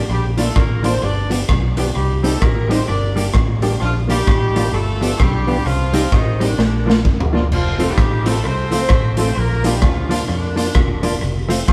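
Cheerful and upbeat, this swung 130 BPM ska excerpt in Bb major sets a clear, distant horn section carrying the melody with light vibrato over a dark, clean hollow-body jazz guitar, mellow percussive tonewheel organ stabs turning through a slow rotary speaker in the background, a round, foam-muted fingered electric bass, and a gritty, saturated garage drum kit with tape echo placed up front, all captured live in a stone room, with a drum fill at 6.6 seconds leading into a new section at 7.5 seconds.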